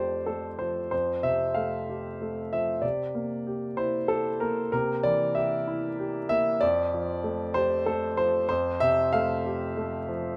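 Peaceful and intimate, this brief excerpt from a longer neoclassical minimalist piano piece moves at 95 BPM in 3/4 with a rubato feel. A solo grand piano carries the whole passage from 0.0 to 10.4 seconds, spanning F2 to F5. Its tone is clear and polished, sitting up front with long sustain and audible action noise that brings the listener close to the instrument. The harmony rests on Fadd9, shifts to C7 at 2.8 seconds, and returns to Fadd9 at 6.6 seconds. Light reverb surrounds the piano in a rough home demo mix.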